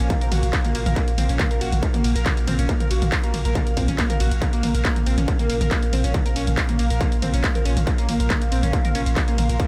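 Lightly reverberant and echo-heavy, this excerpt of driving peak-time techno feels relentless and hypnotic: a distorted, up-front electronic kick anchors a techno kit of handclaps, warm hi-hats, ride cymbal and toms with sidechain pumping and dub echo, while a deep, thick saturated sub bass pumps beneath a gritty, screaming overdriven synth lead riff with phaser, vibrato and analog delay, and a tense, granular swarming drone and an ethereal, airy pad with chorus and phaser pulse in the background.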